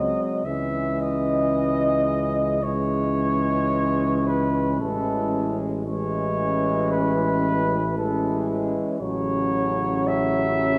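Classical brass band music in a hymn-like vein, tender and warm, moving at a slow, rubato 56 BPM in 4/4 over C#m, Amaj7 and F#m/A harmonies, cut from a longer piece. A dark cornet with light vibrato carries the melody up front, while a present French horn section supplies a second line and a clear euphonium and background trombone section fill in the accompaniment above a mellow tuba bass. All five parts sound together throughout the 10.8 seconds, set in a roomy concert hall with a 2.2-second reverb, where the cornet, euphonium, trombones and tuba take on a distant quality.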